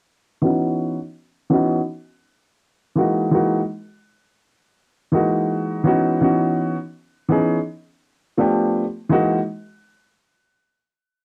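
Smoky and cool, this short hip hop fragment, cut from a longer piece, moves at an unhurried pace with a lazy swing on the sixteenths. A dark upright piano carries the accompaniment on its own from 0.4 to 9.4 seconds, sitting up front with a mellow, woody tone in a middle register. Its sound is muffled by a low-pass filter and aged by cassette tape, and a filter sweep runs across the piano for the length of the passage. The chords drift through lush extended voicings, opening on C#m11 and passing through Emaj9#11 and F#13, returning to C#m11, then moving to G9 before settling back on F#13. A light reverb and the soft grain of a home recording on cassette give the whole a vintage, intimate feel.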